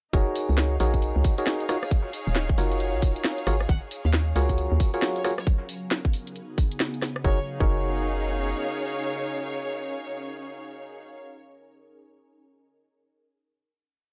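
A dry, gritty hardware recording carries this sunny, bouncy two-step garage piece, built on a tight, up-front electronic kick, a garage kit of cracking snare, warm swung hats and rim clicks, a jingly hand-played tambourine, and a hollow, knocking FM bass with sidechain pumping in a skipping, syncopated line. Dark, organ-like stabs with chorus and tape echo punch out close-voiced chords over a veiled, muted string section that shifts slowly with its own pumping. A rich, focused violin section joins at 3.7 seconds with a repeating riff, an ethereal, airy pad with phaser and reverb follows at 4.3 seconds, and from 7.2 seconds the strings, violins and pad hold a final chord beneath the echoing stabs as the drums and bass fall away.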